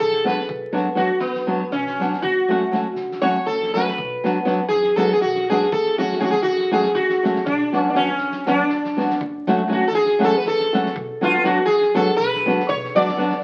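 A buzzing, shimmering sitar and a woody, thumpy upright bass open this virtuosic, bittersweet Balkan wedding-band piece in 7/8, taken from a longer performance, with the plectrum-plucked sitar soloing up front from 0.5 seconds and the gut-string bass sitting dark in the background. A fingerpicked flamenco guitar with fresh strings shares the foreground as accompaniment, while a loose indie drum kit with a fat snare, a punchy kick and a saturated, gritty sound stays back, as the harmony alternates between two minor chords. Everything is bathed in wet studio reverb and the crackle of a very old 78 rpm record.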